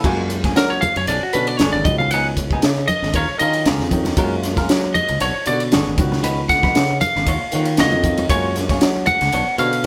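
Electric jazz fusion with a bright, funky mood at 116 BPM in F# major, this excerpt features a dark, slightly broken-up lead guitar soloing up front from 0.6 seconds over growly fretless bass, twangy clean guitar stabs, deep-bassed grand piano in the background, close and dry congas, and a gritty, saturated drum kit with a high-tuned snare and tight kick, all played live in one stone room with moderate reverb as the chords cycle through F#maj9, Bmadd9, C#9sus4 and D#m9.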